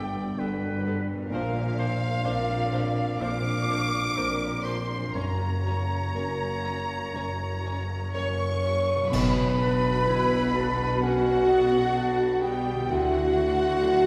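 A recital-hall reverb wraps this moving, longing cinematic orchestral excerpt at a rubato 62 BPM, where a lush, expressive violin section sings the melody over a dark baby grand piano, smooth violas, a dark distant horn section, ringing bright harp, and cello and double bass sections, while an airy flute ensemble, a very quiet distant second violin line and a clear, punchy oboe (until 8.6 s) add countermelodies, dark cymbals and bass drum join from 5.1 s, and a mellow clarinet enters at 9.1 s as the band accents the arrival of B minor.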